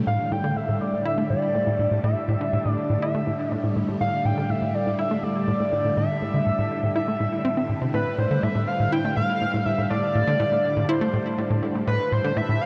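Ambient, sequencer-driven space music at 122 BPM in a straight 4/4, cosmic and hypnotic, heard as a 12.7-second cut from a longer piece on an A5 chord. A swirling, vintage phased string machine holds sustained chords through ensemble chorus, phaser and shimmer reverb, while a punchy, funky plucky analog bass drives a riff with tape echo and a filter sweep running across the whole passage. Above them a shimmering, retro pulse-width lead carries the melody with chorus, shimmer reverb and tape echo, all set in a dark production bathed in a huge 8.9-second reverb.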